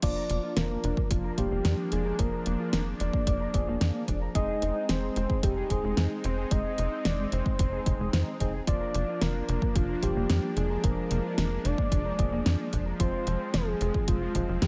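Bathed in light reverb and digital ambience, this nocturnal, nostalgic synthwave excerpt at 111 BPM sets a round, vibrato-tinged octave-layered synth lead with chorus and digital delay over a smooth, detuned supersaw pumping to the sidechain, with a tight, wave-folded sequencer bass up front, a punchy electronic kick and an up-front pop drum kit with fat snare, metallic hi-hats and crash cymbal, while a clean, barky tine electric piano through a combo amp and a dark, fingered electric guitar riff with ensemble chorus and delay sit in the background as the chords move from Bb/F through Ab/F to Fm.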